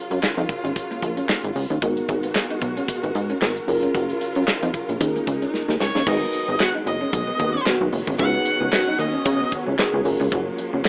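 Slick and danceable, this short cut from a longer early-eighties boogie funk track rides a lightly swung sixteenth-note groove in four. A punchy, plucky analog bass and a tight, mid-forward studio drum kit with kick, snare, hi-hat, handclaps and crash sit up front. Behind them, a soft, round FM electric piano with chorus, a twangy electric guitar riff just at the edge of break-up, and a lush, distant string section holding sustained chords fill out the harmony over a smooth progression of major seventh, minor ninth and suspended chords. Midway through a drum fill, a distorted, fuzzy octave lead guitar with slapback echo enters at 5.8 seconds and carries the melody. At 6.6 seconds, a brassy, evolving synth brass line with chorus and phaser joins in the background as a second voice. The whole mix has light reverb and a rough, demo-like, AM-radio character.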